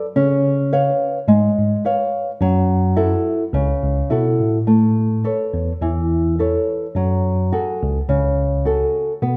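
A lightly swung 4/4 at 106 BPM, with a gentle 53% lilt on the eighth notes, gives this Italian folk serenade a lively, romantic sway. The dark, acoustic flamenco guitar carries the accompaniment from the start, thumb-plucked and sitting up front across a range from C#3 to E#5. A worn, slightly out-of-tune tine electric piano enters at 0.2 seconds to hold down the bass between C#2 and C#3, its tone mellow, clean and direct, and likewise close to the listener. The harmony opens in F# minor over C#7 and F#m7, then brightens to A major at 4.7 seconds with Aadd9 before settling on F#madd9, all tuned to A4 = 442 Hz. A moderate recital-hall reverb of 1.6 seconds surrounds the pair in a warm production, and the passage is cut from a longer piece.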